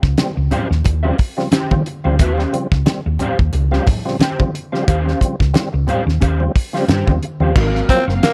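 A dry, close funk groove in a 1970s studio style opens at 89 BPM in 4/4 with a light sixteenth-note swing, energetic and settled on an Eb13 chord in Eb mixolydian. A cloth-damped drum kit thuds up front with a fat snare, tight kick, hi-hat and dark crash, while a round, punchy hollow-body bass sits beside it and a mellow, clean electric guitar with ensemble chorus fills in the harmony underneath. From 0.2 seconds a percussive tonewheel organ adds lightly overdriven stabs with key click, chorus vibrato and a fast rotary speaker, and low-tuned congas sound distant in the background. At 7.6 seconds the harmony moves to Ab13 as a very quiet, lush string machine enters with slow-attack sawtooth chords. A raspy, growling tenor saxophone breaks in up front at 7.9 seconds just as this brief cut from a longer piece ends.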